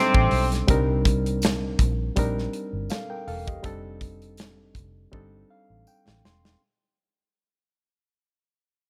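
Lush 1970s-style soul at 81 BPM in 4/4, this smooth, cinematic fragment of a longer piece rides a gentle swing on the sixteenths and fades out across its whole length. A tight, vintage horn section in jazz style opens with a short stab carrying light vibrato, sitting up front before dropping out at 0.5 s. Alongside it, a reedy, barky electric piano, lightly overdriven through its built-in speakers, comps over a rootless F13, then Cm7, returning to F13 at 3.6 s. A dark, foam-muted fingered electric bass gives round, amped low notes, while an acoustic drum kit with a tight kick, medium-tuned snare and hi-hat sits close in a small room, joined from 1.4 s by a faint, jingly tambourine. Near the close, both the drums and the electric piano break into fills.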